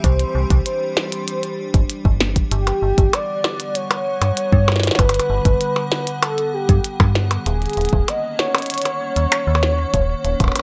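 A glitchy drum kit of tiny snare, clicky hats and percussion blips sits up front over a deep electronic kick in a straight 4/4 IDM groove, while a metallic FM bass with fast, decaying notes, an icy, crystalline pad with chorus and built-in reverb, and a velvety sawtooth lead melody with vibrato and tape echo move through C, Gmaj7 and D#m7 in this intricate, dry home-demo fragment.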